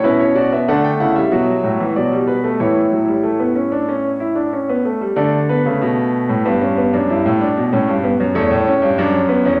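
A clear concert grand piano opens this short passage on its own, setting out a baroque-style four-part fugue in a straight, steady four. The mood is lively and elegant, with the voices spread from a deep bass up into the upper register. The piano sits up front in the sound, its open tone and long sustain carried into a wet recital hall reverb that lends the counterpoint a spacious glow. Around 5.2 seconds the music moves into a new section, the harmony passing from A through D and G to an A seventh before settling on D near 9.0 seconds. Cut from a longer work, the fragment ends at 9.6 seconds.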